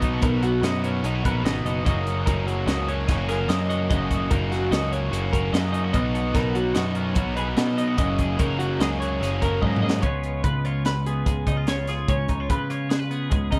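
A dry, close-sounding mix opens this short cut from a longer math rock and midwest emo piece, playful yet wistful in mood and set in a straight-feeling 5/4. Two bright, twangy twelve-string electric guitars ring with a subtle chorus throughout, one laying down chordal accompaniment while the other spins high arpeggios over a progression that moves through Bmaj7, F#6 and F#69. A biting, double-tracked overdriven guitar drives a riff beneath them until 10.0 seconds, and a dark, round overdriven picked bass anchors the low end. Up front, a crisp fusion drum kit with a high-tuned snare, punchy kick and pumping small-room sound works across hi-hat, kick, snare and toms. A drum fill at 9.6 seconds launches a short closing section that settles on C#7 as the twelve-strings, bass and drums carry on.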